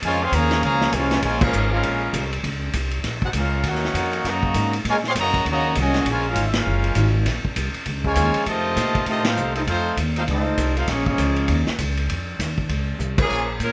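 A present trumpet section with light vibrato carries the melody until 11.6 s over a distant, dark trombone section, woody pizzicato upright bass and a vintage drum kit with a punchy kick and dark cymbals in this dramatic, sultry big band swing excerpt in Bb minor at 199 BPM, where a drum fill at 13.0 s brings in a smooth-topped saxophone section at 13.2 s and a brief trumpet stab, all set in a moderate club reverb.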